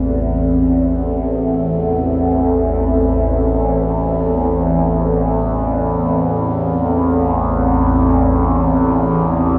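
Drenched in a cavernous, cathedral-like reverb with a 4.7-second decay, this short dark ambient fragment, cut from a longer piece, feels ominous and dark from its first moment. Up front sits a low, resonant drone built from sawtooth and sine tones, its overtones sweeping and shifting as chorus and a phaser color its slowly blooming, long-sustaining body. Above it, a deep, moody pad holds sustained chords across the full 9.6 seconds, its detuned unison sawtooth layers thickened by a sine sub octave. The pad's tone is dark and warm, with a slow attack, long release, and its own chorus and reverb. Together the two parts form a single brooding mass of sound that hangs in the air throughout.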